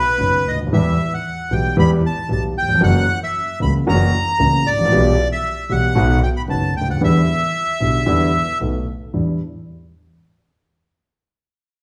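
Passionate and melancholic, this tango excerpt in E minor moves at 114 BPM with a rubato feel, its harmony winding from Em through F#7 and B7 before settling on Em7. An up-front, reedy bandoneon carries the melody until 8.6 seconds, while a dark, mellow concert grand piano with a deep low end provides the accompaniment. Beneath them a single bowed double bass plays sul tasto with light vibrato, a soft attack and an airy, nasal, intimate tone, all sharing a large, wet studio room as a live band.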